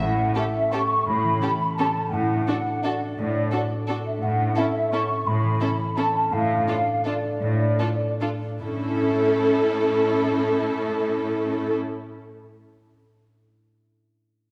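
A mellow, up-front flute ensemble carries a pure second line through this festive, sweeping excerpt from an orchestral ballroom waltz in A major, moving in 3/4 at 140 to 186 BPM with a rubato feel. A bright concert harp rings out fingerpicked arpeggios from the start, and a rich, distant cello section holds the bass underneath. From 0.4 seconds the strings join: a smooth violin section takes the melody, a second, lush and expressive violin section adds another line, and a focused, clear viola section fills in the accompaniment, all bowed with vibrato. The harmony rests over an A pedal, moving from A to D/A and back, then to Dm/A as the music slows down between 5.8 and 8.6 seconds, and returns to A at 8.6 seconds as a new section begins. A wet concert hall reverb gives the ensemble a spacious, ballroom glow.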